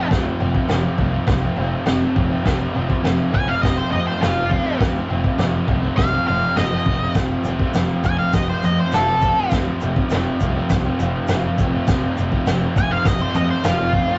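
A straight 4/4 pulse at 102 BPM drives this rowdy, raw garage rock excerpt in F major, where a dark octave-fuzz lead guitar carries the melody up front over a double-tracked, crunchy overdriven guitar riff, a growling picked electric bass sitting in the background, and a muffled, lo-fi vintage drum kit of tight kick, medium-tuned snare and toms, with a grainy tube shaker joining at 7.1 seconds, the whole caught as a rough rehearsal-room recording with moderate booth ambience and a top end capped at 7.8 kHz.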